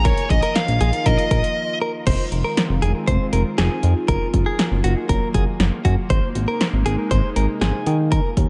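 A short synth-pop cut opens with everything arriving together: a fuzzy, compressed lead guitar states a brief melody up front, over punchy analog drum machine, a glossy, nasal chorused synth bass and a swirling, detuned phased pad. A clean, direct-recorded electric guitar joins a moment later at 0.1 seconds, carrying a picked second line through analog delay. The mood is driving and cool at 119 BPM in a straight 4/4, set in Eb dorian. A short break begins at 1.6 seconds, the fuzz guitar drops out at 1.8 seconds, and the groove moves into its second section at 2.1 seconds. From there, the clean guitar continues its line while the pad slowly evolves above a bass line built from pulse and sawtooth tones. The harmony moves from Bbsus4 through Fm7, Ebmadd9/Gb and Abadd9 before landing on Ebmadd9. The drum kit has a small-room bite on its kick and snare, and the whole mix sits in light reverb, echo-heavy, with a soft top end.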